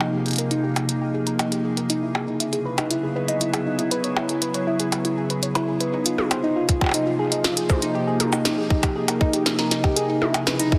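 A glassy, ethereal FM pad holds slow-blooming chords under a ringing, harp-like synth pluck tracing soft, dark arpeggios through chorus, delay and shimmer reverb, while a glitchy electronic kit of tiny snare, clicky hats, cabasa, toms and percussion blips ticks through delay at 119 BPM, a filter sweep moves across the pad over the first 5.9 seconds, and a tight electronic kick enters at 6.7 seconds, giving this eerie IDM excerpt, cut from a longer piece and moving through chords such as Abmaj9, Emaj7 and Fm7, a dense, heavily limited finish in a lush hall.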